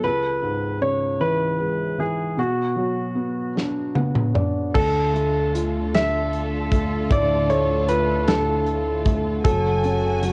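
Swaying and heartfelt, this fragment of a six-eight pop ballad moves at 51 BPM in a straight 6/8 feel, tuned slightly low to A4 = 435 Hz. A polished concert grand piano carries the melody from the start, intimate and present with long sustain and audible action noise, colored by cassette tape and analog delay. Beneath it, a felt-muted upright piano gives soft, boxy, mellow accompaniment across a broad range, and at 3.6 seconds it plays a fill alongside a drum fill as the acoustic kit enters, dark and smooth with a punchy kick, a medium-tuned snare, crash, hi-hat and toms, its top rolled off and its sound colored by cassette tape. A lush, woody string section adds bowed sustained chords with vibrato from 4.7 seconds, and a round fingered electric bass joins at 4.8 seconds as the harmony shifts from C#m7 and Bm to Dm, closing on F#madd9. The whole has light reverb, studio ambience and the muffled character of a home cassette recording.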